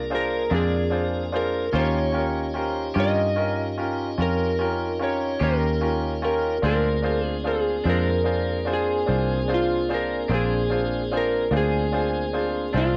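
A slightly broken-up slide guitar played with fingerpicks carries the melody over a piping, slowly rotating tonewheel organ and a round, foam-muted fingered bass from the first moment of this gritty, rollicking slow blues excerpt in 12/8 at 49 BPM in Bb mixolydian, with a brilliant, up-front grand piano with audible action noise entering at 0.1 seconds and a picked, scooped clean electric guitar with harmonic tremolo sitting in the background from 0.5 seconds, the organ, piano and clean guitar carrying a cassette-tape color as the chords move from Bb9 to Eb9 and back to Bb9 at 6.6 seconds in a lightly reverberant home recording.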